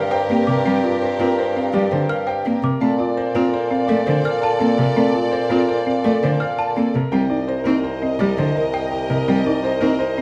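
Bright and propulsive, this minimalist classical pattern piece moves at 167 BPM in 6/4, in B-flat major, with a brilliant grand piano carrying the melody over intense, bowed sustained chords from a studio violin section. A woody, rustic marimba and a dry trough xylophone in the background spin arpeggios, the xylophone stopping at 9.0 seconds, while an up-front, vintage-toned bassoon holds the bass and a focused solo cello with vibrato adds accompaniment, moving through Gm7, Bbmaj7 and Cm7. A moderate recital hall reverb and a dark, warm production frame this short cut from a longer work.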